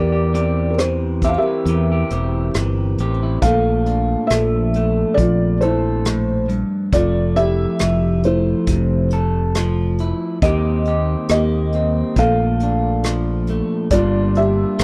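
A studio-reverb sheen surrounds this nostalgic, hopeful acoustic folk-pop ballad at a straight 69 BPM in 4/4, where a boxy, felt-muted upright piano with audible action noise carries the melody over a slightly broken-up, compressed electric guitar with spring reverb, an up-front fingered electric bass and a distant, roomy brush kit with a punchy kick that enters at 0.3 seconds, moving through chords such as C7/E, Bbmaj7, Fmaj7 and Eb6.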